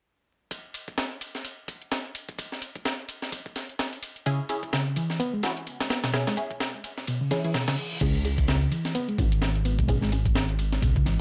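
A swung breakbeat groove at 128 BPM in 4/4 opens this funky, raw excerpt in C# minor. From 0.5 s, a gritty, compressed sampler-style kit sits up front with a thumpy kick, a high-tuned snare, crash and ride cymbals, while a bright, layered electronic hi-hat plays in the background. At 4.3 s a reedy, worn electric piano enters with a low riff, slightly out of tune and lightly overdriven through its built-in speakers with tape echo. A muted, mellow dub chord stab arrives with it, a resonant detuned sawtooth pluck with a moving notch, phaser and tape echo. Just before the second section, the kick drops out and a reverse cymbal sounds in the background, then at 8.0 s a deep, rumbling detuned saw bass lands up front as a filter sweep moves across the stab. The room is fairly dry, and vinyl crackle runs throughout.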